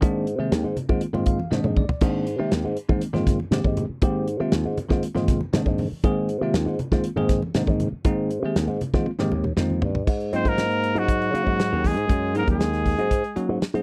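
A dry, close 1970s-style studio sound frames this slick, soaring electric jazz fusion excerpt, where a bell-like tine electric piano, a growly slap bass with an envelope filter and an up-front damped 70s drum kit run throughout, soft-handed congas sit in the background from 0.8 to 9.8 seconds, and at 10.4 seconds a clear trumpet with slapback echo takes the melody over a subtoned bass clarinet second line.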